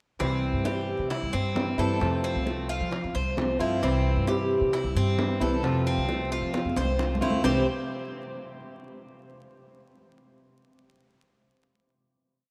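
From 0.2 s a sunny, relaxed Cuban son and guajira montuno in C major sets off at 133 BPM: a bright, metallic tres plays an arpeggiated guajeo up front beside a woody, dark pizzicato upright bass with a syncopated figure, while a fingerpicked archtop guitar strums with muted slaps over the alternating C and F chords. Round, low-tuned bongos in steady eighths with hand bell sit very quietly under ringing, high-tuned congas with slaps and open strokes in the background. A drum fill at 6.5 s leads to a final C chord at 7.4 s, and the whole piece carries vinyl crackle and a cathedral reverb that places it in a vast, echoing space.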